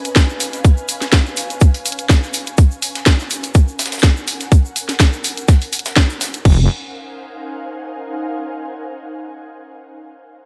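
An overdriven, tight electronic kick drives this bouncy, gritty bass house excerpt alongside an up-front garage kit with a cracking snare, a grainy egg shaker in the background and a very quiet, dry funk kit, while an ethereal, warbling vintage pad fades with chorus, reverb and sidechain pumping, and a heavy, detuned wobble bass arrives with a brief, saturated note at 6.5 seconds.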